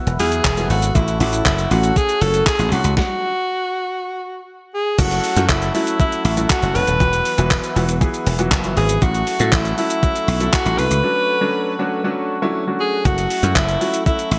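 Dance-pop with an energetic, bittersweet mood, cut from a longer piece, where a bright alto saxophone with vibrato and digital delay carries the up-front melody over a crisp, overdriven 8-bit drum machine with thumpy kick, handclaps, shaker and gated reverb. A dry, punchy thumbed slap bass and a clear grand piano pump under sidechain compression, while a reedy, mellow accordion holds sustained chords in the background. The groove halts for a stop from 3.0 to 5.0 seconds and drops into a break at 11.0 seconds, all framed by a plate reverb and 1980s-style digital production.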